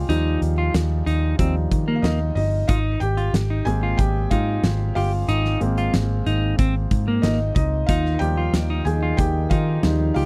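This piano-driven pop excerpt in Eb major moves at 92 BPM in a straight 4/4, with an uplifting, hopeful mood built around an Ebadd9 chord. A soft, felt-muted upright piano with audible action noise carries a solo throughout. It is joined by a round, foam-muted vintage electric bass sitting up front, a dark, clean electric guitar riff, and a huge arena drum kit with a fat snare and punchy kick. A mellow French horn section with light vibrato enters in the background at 7.9 seconds, all within a dry, close 1970s-style studio sound.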